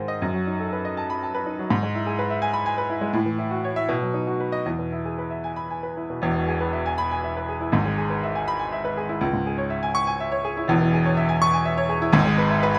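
Agitated and stormy, this short cut from a longer classical virtuoso piano study sets a clear, worn grand piano alone and up front in a lightly reverberant, closely miked space, its rubato 6/8 phrases ranging from E1 to C#6 as the harmony moves from B7/F# toward E before a second section turns through C#m and settles on E/G# at 12.1 seconds.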